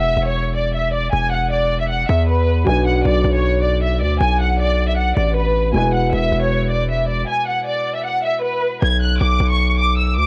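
A half-time trap groove in 4/4 drives this dark, menacing hip hop excerpt. It opens on a break before the full beat settles in, then drops into a stop at 7.3 seconds. A distorted 808-style bass sits up front throughout, its saturated, aggressive sine tone carrying a noise layer, with a fast attack and a decaying tail deep in the low end. Above it, a bowed studio violin section carries the melody, close, smooth and even with vibrato, its sound softened by a low-pass filter. A concert grand piano enters at 2.6 seconds as accompaniment over chords moving between B minor and E; it is mellow and boxy with deep bass, filtered and given a cassette-tape colour. The piano stops at 8.8 seconds as the harmony returns to B minor, and the recording has a home-cassette character with a light touch of studio reverb.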